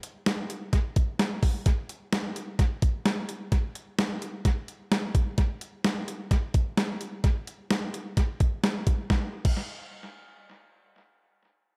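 The recording sounds roomy and echo-soaked, with a moderate echo chamber reverb that lingers for about 1.6 seconds. This is a bright, wistful pop passage cut from a longer piece, moving at 129 BPM in a straight 4/4 feel. The only part is a clean 12-bit digital drum machine. Its sampler-style kit of crash cymbal, hi-hat, thumpy kick and medium-tuned snare sits up front, colored by tape echo and a tape-warm grain, as though re-recorded in a large room. The arrangement shifts into new sections at 1.7 seconds and again at 9.1 seconds, and the drums stop at 9.6 seconds.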